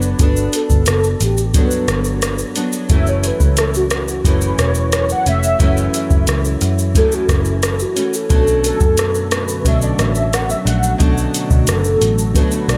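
A velvety, detuned sawtooth synth lead opens this sunny, nostalgic indie-pop and bedroom-pop piece at 89 BPM with a melody dressed in ensemble chorus and delay. Beneath it sit an up-front vintage rhythm box with deep kick, metallic hats, rim click and shaker; a dark, foam-muted picked electric bass; a fingerpicked nylon-string guitar with finger squeak, analog chorus and warbly pitch drift; and a reedy electric piano with fast tremolo, cassette-tape colouring and slapback echo set in the background. The harmony moves through Gmaj7, F#m7 and Bm7 before a hollow, flute-like pad enters at 8.8 s, all under light reverb.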